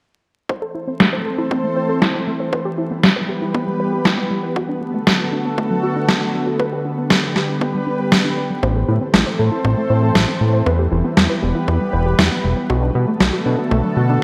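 A warbling, dusty pluck arpeggio with digital delay and a filter sweep opens this bittersweet, melodramatic italo disco excerpt over a very quiet, overdriven kick, soon joined by a lush, detuned unison pad with chorus up front and a tape-warm, low-passed snare with gated reverb, before a fat, sawtooth analog bass arrives at 8.6 seconds, the mix bathed in a lush hall reverb with bright 1980s-style digital production and vinyl crackle.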